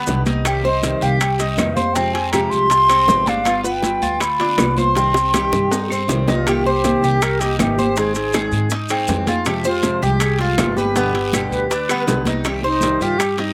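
Cuban son in a guajira vein, this nostalgic, sultry piece moves at 160 BPM in C minor, with a hollow silver concert flute carrying the melody in a pure, tongued tone with vibrato. Beneath it, a small nylon-string guitar with slapback echo fingerpicks the chords, a Cuban tres picks metallic arpeggios on its doubled strings, and a dark, thumpy upright bass plucks on gut strings. Tight high-tuned bongos, soft-handed congas, ringing metal-shelled timbales, raspy guiro and distant woody claves sit in the background while grainy maracas sound up close, with a drum fill from 5.0 to 6.5 seconds, all in a dry outdoor sound.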